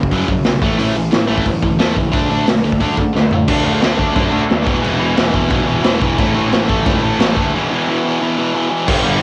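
A straight 4/4 pulse at 178 BPM drives this energetic, upbeat punk rock clip in A major, cut from a longer piece, with a raw garage drum kit up front, its punchy kick, medium-tuned snare, dark cymbals and toms pumping in a small room with a gritty, saturated, rolled-off tape sound. A tight distorted guitar rips through the riff up front while a crunchy overdriven guitar adds a bright, picked layer behind it, and a growly fuzz bass sits low in the background, moving through chords like F#5, A5, D5 and E5. A drum fill at 3.2 seconds sets up the second section, and a break arrives at 7.5 seconds, all captured as a lo-fi home cassette recording with a small room ambience.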